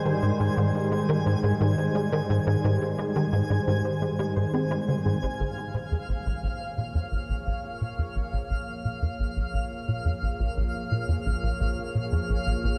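A straight, steady 4/4 pulse from a tight, punchy sawtooth sequencer bass riff, up front with chorus and tape echo, drives this mysterious, cosmic stretch of ambient space music, where a bright, detuned resonant pad holds sustained chords, a twinkling granular FM texture sparkles high above in its own reverb, and a soft, round pluck plays dark background arpeggios until 5.2 s, after which the pad fades in while a filter sweep runs through the bass, the dreamy mix soaked in cathedral reverb.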